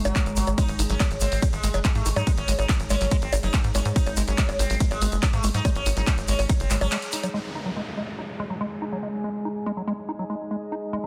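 A dense, heavily limited modern master with digital ambience frames this driving, psychedelic trance passage, cut from a longer piece, at 142 BPM in straight 4/4. An overdriven electronic kick sits up front beside a punchy sawtooth sequencer bass with a filter pluck. An overdriven techno kit adds bongos, handclaps, hi-hat and ride cymbal, its hats, percussion, snare and cymbals darkened by low-pass filtering, while a grainy tube shaker murmurs in the background. Over this, a bright, buzzing plectrum-plucked sitar with shimmering sympathetic strings carries the melody through phaser and tape echo, alongside a squelchy, resonant acid bass riff treated with phaser and digital delay, and an evolving, detuned wavetable pad holds sustained chords with chorus and reverb, all three pumping to the sidechain. After a band accent at 6.9 seconds the drums, sitar and sequencer bass fall silent by 7.3 seconds, leaving the acid riff and wavetable pad as an electronic downlifter sounds and a deep, moody sub-octave ambient pad enters at 8.7 seconds.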